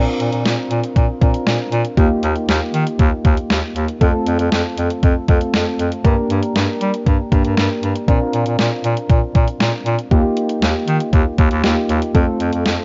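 Wistful yet upbeat, this synth-pop excerpt moves at 118 BPM in Bb major, cycling through Bbadd9, Ebadd9, F and Gm chords. Soft, round electric-piano-like synth keys with chorus and a filter sweep carry the accompaniment, while a bright, soft-attacked bass clarinet in a classical style holds the bass line up front. A detuned 8-bit drum machine enters at 0.2 seconds, its overdriven, thumpy kick, medium-tuned snare and hi-hat punching forward, all set in light digital reverb with the worn, warbling pitch drift of old cassette tape.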